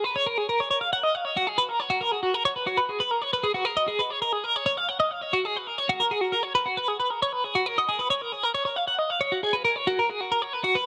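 A clean, picked twelve-string electric guitar sits up front and plays alone for the full 10.9 seconds of this brief rock fragment, its compressed, bright tone carrying a playful mood in a straight 9/8. Tremolo and dub echo color the guitar, and light reverb with a digital ambience gives the echo-heavy mix its space, while nothing sounds above 10.9 kHz.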